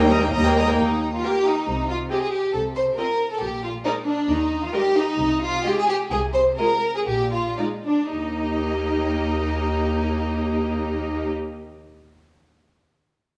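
Over a straight 4/4 pulse, this dramatic, restless fragment of a quick classical-period orchestral movement gives the melody to a focused, vibrato-laden violin section high above a smooth second violin line that sits up front. A clear, somewhat distant viola section fills in the accompaniment, while a rich, even double bass section and a background cello section, expressive with soft attacks and portamento, share the bass. The music slows between 3.4 and 8.1 seconds before a new section arrives, and the strings ring in the reverberant bloom of a recital hall.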